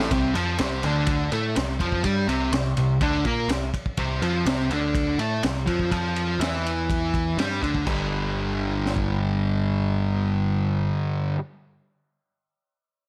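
Fuzz guitar, growling picked bass and a crunchy breakbeat kit start together in this raw, swaggering garage rock fragment at 123 BPM in a straight 4/4. The double-tracked, distorted guitar riff sits up front over a C5 chord, while the bright, overdriven bass and the small-room drums, with their punchy kick, high-tuned snare and dark, rolled-off cymbals, give the groove a gritty, saturated push. At 7.9 seconds the harmony shifts to G5, the drums drop out at 9.1 seconds, the bass stops at 10.9 seconds, and the guitar rings on briefly under light reverb before the cut.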